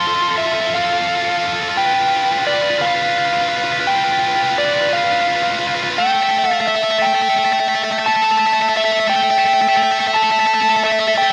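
An overdriven slide guitar carries the melody with a warm tone and a touch of slapback echo, while a tight, bright, double-tracked distorted guitar sits up front with a picked riff beneath it. This slow rock excerpt in 6/8 moves at 57 BPM with a cinematic, hopeful mood, building over its 11.3 seconds through F and G7 before landing on A5 at 6.0 seconds. A lush hall reverb gives the pair a spacious, roomy sound.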